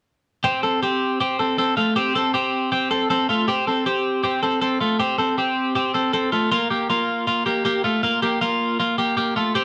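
In a straight, brisk 4/4, this breezy, youthful indie pop fragment features a solo twelve-string electric guitar, clean, compressed and picked, sitting up front within the moderate reverb of a large studio room. The guitar rings out on an Fadd9 chord from 0.4 seconds, moves into a new section at 3.5 seconds, and settles onto a Bb5 at 6.5 seconds before the clip ends at 9.6 seconds.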